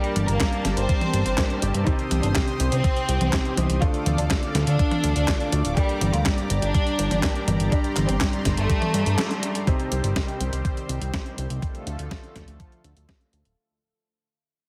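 A heavily compressed, radio-style sound with light digital ambience frames this nostalgic, bittersweet italo disco excerpt at 123 BPM in G minor, moving through Gm, Cm and Dm. A thumpy, overdriven electronic kick and a fat, saturated analog bass with a filter sweep sit up front, while an overdriven 12-bit drum machine adds handclaps, hi-hat, a medium-tuned snare and toms. A detuned, chorused unison pad and vintage grand piano stabs in the background support a clear, close violin section whose vibrato melody carries delay until 9.6 s, during a break that opens with a band accent at 9.2 s, before the track fades out from 9.7 s.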